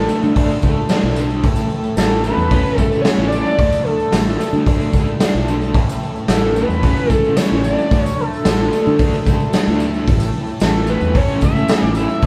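A screaming, ring-modulated synth lead with a phaser carries the melody in this kaleidoscopic, trippy psychedelic rock excerpt at 111 BPM in A major, moving between D and A chords. Beneath it, a crunchy, double-tracked overdriven guitar plays a riff with tremolo, a round fingered electric bass holds the low end, and a raw garage drum kit with a punchy kick and gritty, saturated tone sits up front from 0.4 seconds. Floating bowed strings hold sustained chords in the background alongside a jingly tambourine, and the whole band plays live in one room with light reverb.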